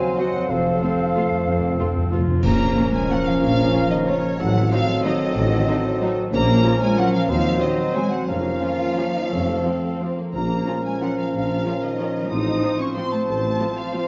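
Bittersweet and sweeping, this rubato orchestral ballroom waltz excerpt in 3/4 sets a lush studio violin melody with vibrato and portamento over a very quiet, focused symphonic violin section, expressive violas and cellos, and a rich, distant double bass section, while an airy flute ensemble, clarinet, cor anglais, dark bassoon, mellow French horns and a ringing concert harp fill out the texture, with a dark cymbal swell, clash cymbals and concert bass drum accompanying an opening timpani fill at 0.5 seconds before a mellow tuba joins on the band accent at 2.4 seconds, all in a moderate scoring-stage reverb with a soft, rolled-off top.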